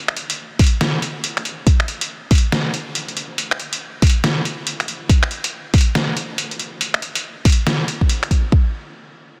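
Meditative and brooding, this half-time dubstep excerpt moves at 140 BPM in 4/4, with a 62% swing on the sixteenths giving its beat a loping, unhurried gait. A trip hop sampler-style drum kit enters at 0.1 seconds, its finger snaps, hi-hat and medium-tuned snare sounding pitched down, muffled and compressed, with overdrive roughening the hits. An electronic kick drum joins at 0.6 seconds, deep and layered, sitting up front and louder than the kit. Both drum parts carry the excerpt, and the kick runs to the close at 8.6 seconds. Light reverb and a digital ambience surround the drums, and the master is dense and heavily limited in a modern style.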